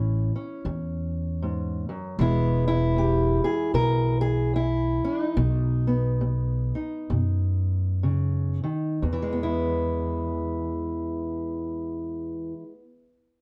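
A fingerpicked steel-string parlour guitar and a pizzicato upright bass start together, setting up a soulful, swaggering acoustic country blues duo in E major and 4/4 with a loose swing on the eighth notes. The guitar carries the melody with a boxy, shadowy tone, softened by a touch of plate reverb. The bass sits just as far up front, its gut strings giving a woody, thumpy bottom end. The tempo hovers between 59 and 78 BPM and slows from 2.2 to 9.0 seconds as the chords move from A to E to B. At 9.0 seconds a second section returns to E, and the bass drops out at 12.3 seconds, just before the guitar, in this short piece cut from a longer recording with dim, warm production and light reverb.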